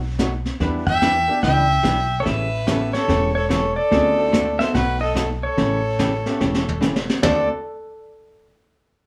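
A swung 4/4 groove drives this cheerful, playful western swing excerpt, built on a thumpy gut-string upright bass, a vintage brush kit with dark cymbals and a high-tuned snare, a clean, compressed hollow-body jazz guitar and a woody upright piano sitting in the background. Up front, a twangy pedal steel carries the melody with fingerpicked slide lines, volume swells and plate reverb, while a nasal, earthy fiddle with light vibrato plays a second line from 0.9 seconds. A drum fill at 6.4 seconds leads into a new section at 7.2 seconds.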